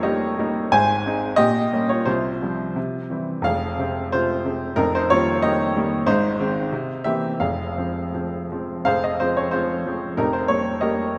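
Bathed in a wet concert-hall reverb with the highest treble rolled off, this brief fragment of a romantic classical character piece features a solo upright piano, woody, smooth and vintage in tone and placed up front, unfolding a brooding, bittersweet mood in a freely rubato 2/4 before returning to a restatement of its opening idea.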